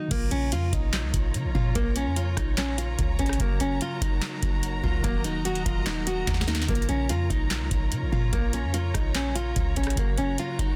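A half-time trap groove at 146 BPM in 4/4 drives this melancholic, menacing hip hop piece in Bb minor. A booming analog drum machine sits up front with a deep kick, crisp snare, handclaps, rim clicks, metallic hi-hats and a crash, and a short room sound on the snare, claps and hats. From 0.1 s, a dark 808-style sine bass with a fast attack, decaying tail and a noise layer anchors the low end. A fingerpicked nylon-string guitar carries the melody in a classical style, sitting up front with fresh strings and audible finger squeak. A worn, slightly out-of-tune tine electric piano, clean through a combo amp, adds accompaniment in the background, while a distant bowed string ensemble holds expressive sustained chords with vibrato, soft attacks and portamento. The harmony moves from Bbm through Gb and Ebm back to Bbm before turning to Gb, a drum fill arrives at 6.3 s, and the dry, heavily limited master keeps the sound dense and modern.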